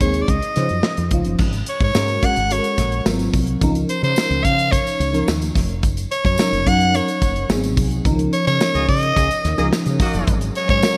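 Over a straight 4/4 groove at 108 BPM, this nocturnal, urban slice of polished 1980s jazz-funk pop sets a raspy, close-miked soprano saxophone melody above a lush FM electric piano with a soft pad layer, a woody fretless bass, a punchy modern studio drum kit and a distant jingly tambourine from 1.4 seconds. A band accent lands at 8.1 seconds, a roomy horn section with delay enters at 8.7 seconds, and a shimmering chorused pulse-width pad arrives at 10.3 seconds, all in bright digital production with light small-room reverb.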